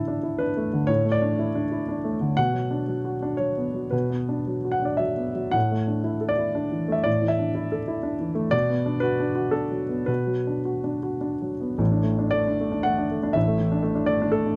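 Neoclassical minimalist piano in 3/4, melancholic and intimate, moving with a rubato feel between 104 and 125 BPM. A solo grand piano, smooth and vintage in tone with a short sustain, sits up front through close, detailed microphones and little reverb, spanning A1 to F#5. Its harmony alternates between Asus4 and Bm, shifting into a new section at 11.8 seconds before this short cut from a longer piece ends at 14.6 seconds.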